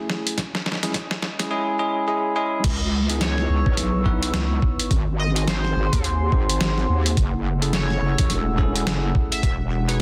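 A dense, heavily limited glitch hop cut at 106 BPM in C# minor, gritty and funky with a 16th-note swing, opens on a dark analog pad sitting in the background and bell-like tine electric piano stabs with 12-bit sampler grit, both pumping against the sidechain, while a pitched-down, tape-warm sampler drum kit fills and a filter sweep build toward the drop at 2.6 seconds, where a heavy, saturated wobble bass comes up front over a thumpy kick and an edgy, tearing sync lead with vibrato enters at 3.2 seconds, all moving through Emaj9, C#m7, G#7 and F#m7 in a plate-reverbed space.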